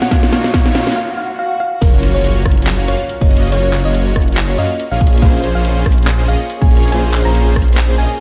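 This lush, emotional future bass excerpt, swung and in a half-time feel, opens on a build-up. A round, tine-like FM pluck carries the melody with chorus and dub echo, while a smooth, full-bodied supersaw plays a riff. A bell-like electric piano sits in the background until 0.9 seconds, and a punchy electronic kick joins a pop drum kit, whose fat snare, metallic hats, handclaps and rim clicks play a fill over a very quiet riser. After a brief break and swell, the drop lands at 1.8 seconds with an impact, as a thick, saturated detuned saw bass enters up front with chorus and sidechain pumping. Alongside it come two very quiet arpeggio parts, an airy, dreamy lead with vibrato and a ringing, fingerpicked concert harp, over chords that move from Ebm9/Bb to Gbmaj7 and Bbm9. The production is dark, with light reverb and digital ambience.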